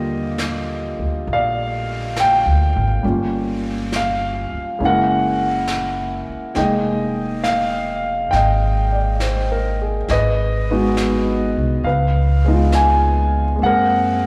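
Heard through a live club's PA, this recording sits in a lush hall reverb that gives it the close, slightly roomy air of a gig. It's a tender, intimate jazz ballad with a gentle swing, taken from a longer piece. A concert grand piano carries the accompaniment up front, with a deep bass register, long sustain, audible action noise and a touch of slapback echo. The upright bass is just as forward: woody, dark and thumpy, with pizzicato gut strings. A jazz brush kit joins at 0.4 s, playing brushed snare and hi-hat quietly in the background with its own slapback echo. The harmony moves through rich extended chords, from Ebmaj9 through Gm7b5, Gb9 and Fm11 to Abm7 and Db9, and comes to rest on Gbadd9(#11) at 13.6 s.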